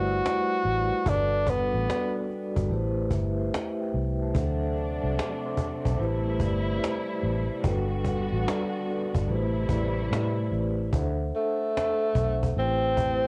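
A swung 73 BPM lo-fi hip hop groove in 4/4 rides on a snappy cajon with snares, sampler grit and cassette tape colouring, under a dark, round, foam-muted fingered electric bass sitting up front. Soft-mallet vibraphone rings mellow and metallic with a slow motor vibrato through cassette haze and a low-pass filter, moving through Am7, Gmaj7 and D7 in A dorian, while a breathy jazz tenor saxophone with subtone and scooped notes opens the cut and returns at 11.4 seconds. Between 4.4 and 10.9 seconds a lush, bowed symphonic string section adds sustained chords, deepening the melancholic, nostalgic mood of this fragment from a longer piece.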